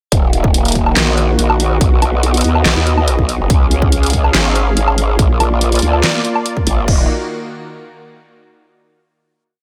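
Heavy wobble dubstep in a half-time feel, this complete piece is chaotic and aggressive, launching straight into a drop that runs until 6.9 seconds before a final chord rings out. An up-front growl bass dominates with saturated, bright, wobbling phrases whose wobble speed changes, its formant-filtered tone thickened by chorus and overdrive. Beneath it, a lush supersaw pad of detuned sawtooth voices holds soft-attack chords through Ebm, B, Db and Bb, pumping against the sidechain and shaded by a low-pass filter. The dubstep drum kit sits up front with a deep snare, handclaps, closed and half-open hi-hat, low woodblock and crash cymbal, while a punchy, layered electronic kick drum carries the half-time pulse. The drums, re-recorded in a large room, stop at 7.0 seconds, and the bass and pad continue to 7.1 seconds, all under a light reverb.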